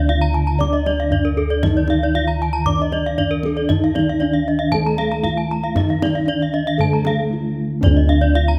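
Up-front bossed gongs carry the bass with a dark, round, beating bronze tone in this hypnotic, shimmering Balinese gamelan excerpt. Above them, a mellow metallophone melody and a softer metallophone accompaniment, both struck with padded disc mallets, ring against two bright, horn-mallet metallophones spinning arpeggios, one close-miked, dry and full. All the metallophones shimmer with the beats of paired tuning, while a deep kendang sits in the background and plays a drum fill from 7.2 s during a brief break before the passage is cut off.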